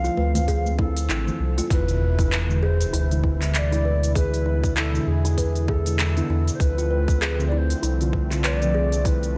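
Light reverb and a digital ambience frame this bright, 1980s-style production, a hypnotic organic downtempo excerpt at 98 BPM in 4/4 with a swung sixteenth feel, set in E phrygian dominant and tuned to A4 = 437 Hz. A mellow, hollow cedar flute with a wooden chiff and delay carries the melody from a distance, over a detuned sawtooth pad with chorus and sidechain pumping that holds sustained chords in the background. Kalimba arpeggios, woody and soft with a 12-bit sampler grit and delay, open under a filter sweep. Meanwhile a round sine sub bass, also pumping, sits up front beside a tight, tape-warm electronic kick. Crisp hats, cabasa and handclaps from an organic electronic kit re-recorded in a large room fill out the groove, and congas appear briefly in the background near the start. At 1.7 s an electronic impact marks the move from Dm7 to E7, and from 2.5 s dark, muted, felt-like synth keys with chorus and pumping add intimate accompaniment before the harmony returns to Dm7.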